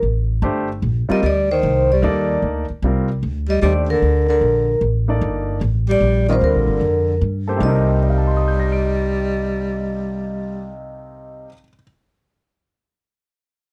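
Modal jazz in a swinging waltz metre, this short cut from a longer piece has a searching, spiritual mood, resting on a Cm9 harmony. Woody, thumpy pizzicato upright bass opens alone and sits up front. The concert grand joins at 0.4 seconds, intimate and polished, with audible action noise, deep low notes and long sustain. At 1.1 seconds the vibraphone takes the melody in its upper-middle register, metallic and ringing with a slow motor vibrato. At the same moment, a breathy, mellow tenor saxophone enters with a low second line, close-miked, with soft attacks, scooped notes and light vibrato. The dry, close studio sound carries a 1970s character, and the music moves into a new section at 7.6 seconds.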